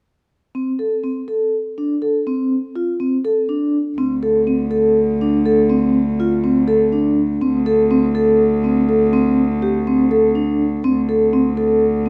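A metallic, ringing vibraphone played with medium mallets opens this hypnotic, restless chamber piece at 0.5 seconds, its arpeggios sitting close-miked and full at the front of the sound, with a slow motor vibrato shimmering through each note. The music moves in an uneven 7/8 with a straight feel, giving the repeating figures a restless, slightly off-balance pull. At 4.0 seconds a single bowed cello joins on a low D, played sul tasto with a soft attack so the tone comes across pure and floating, both present and strangely distant. Over that low D the harmony drifts from a D7 sonority through A minor and then F chords, keeping the bass anchored while the colours shift above it. The recital hall reverb is wet and lingering, and the overall production is dark, wrapping the two instruments in a shadowy glow until the excerpt cuts off at 12.1 seconds.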